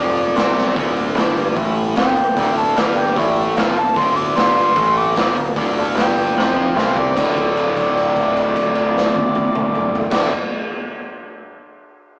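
Brooding and heavy, this blues rock and southern rock power-trio cut moves at 150 BPM in a straight 4/4 in D minor, clipped from a longer piece. An amplified, overdriven harmonica carries the melody with light vibrato, tongue slaps and scooped notes in a jazz-style solo, while a double-tracked, picked guitar with overdrive drives the riff up front beneath it. A growling picked bass, direct and amped with its own overdrive, anchors the low end, and a raw garage drum kit with a punchy kick, medium-tuned snare and saturated, rolled-off top enters at 0.2 seconds with a fill at 0.6 seconds. A very quiet, thick tonewheel organ joins at 0.8 seconds with sustained chords through a slow rotary speaker and chorus vibrato. After a drum fill, the harmony shifts from Dm to Dm9 at 7.2 seconds as a long note is held nearly to the close. A stone room reverb and a rough rehearsal-room, small-speaker sound give the whole thing a gritty edge.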